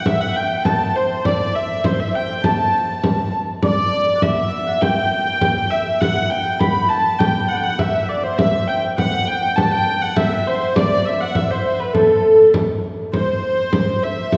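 Medieval dance in 2/4 with an ancient, mysterious mood, cut from a longer piece and led by a nasal, reedy hurdy-gurdy with an airy bow, close and up front. A fingerpicked, ringing concert harp and a gut-string fiddle carry second lines in the background, both with slapback echo, the fiddle dropping out at 3.3 seconds and returning at 8.4 seconds, while a compressed, saturated frame drum played with hard hands sits prominently in the mix. The ensemble is heard from further back in a wet concert hall reverb.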